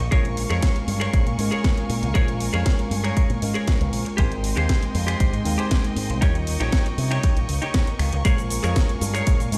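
A punchy, tape-warm electronic kick sits up front in this groovy, sleek nu-disco excerpt alongside an overdriven house kit of cabasa, finger snaps, hi-hat and a cracking snare. A picked electric bass with an envelope filter holds the low end, while a dark, compressed clean electric guitar riff and a mellow tine electric piano, both touched with subtle chorus and tape echo, move through Bbm7, Abmaj7 and Eb7. A rich, bowed studio violin section sustains smooth chords with vibrato and sidechain pumping, and the mix sounds as if played through a big sound system in a bare stone room.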